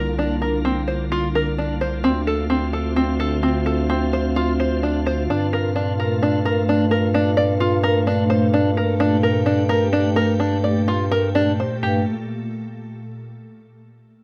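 Pensive yet urgent, this contemporary chamber piece in an uneven 7/4 sets a twangy, plunky open-back banjo playing fingerpicked arpeggios up front beside a mellow, soft-attacked bass clarinet holding the low line in a classical style. Alongside them, a pure, organ-like pad with slow attack and long release sustains chords, its detuned ensemble chorus and built-in reverb giving it a bright, full-bodied glow. The harmony moves from C9sus4 through Dm7 to Gm9, all captured with close, detailed microphones and light reverb.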